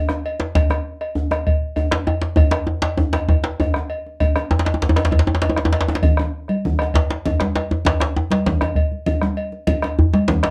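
A driving 12/8 groove at 131 BPM in dotted quarters anchors this earthy West African drum ensemble piece, with a round, up-front bombo, a metallic cowbell and two hard-hand djembes: one deep, compressed and saturated with metal rattles, the other medium-tuned, close and dry. After a drum fill from 5.4 to 6.0 seconds, thick-skinned congas join at 6.0 seconds. The whole recording sits in a wet small room and carries the worn, warbly pitch drift of old cassette tape.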